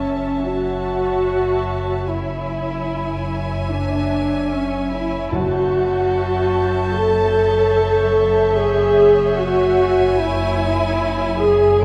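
Set in a reverberant recital hall with a long, wet tail, this eerie, tense excerpt of a suspense film score moves at a slow 74 BPM in 4/4, hovering between F#m7 and C#m/F#. A mellow French horn section sits forward with sustained chords, while a smooth violin section carries the high melody with light vibrato, and a dark, distant violin section plays a soft-edged, expressive second line beneath it. A viola section fills in the accompaniment, and a cello section and a focused double bass section hold the low F# in the background, joined by a deep, ominous rumbling drone that warbles with its own built-in reverb. A huge, dark impact opens the passage, barely audible and over by 2.1 seconds. At 5.3 seconds a background timpani entry with calf heads and medium mallets adds weight, and an intimate, close violin section enters high in the range, playing sul tasto with a soft attack to add a hushed texture above the rest.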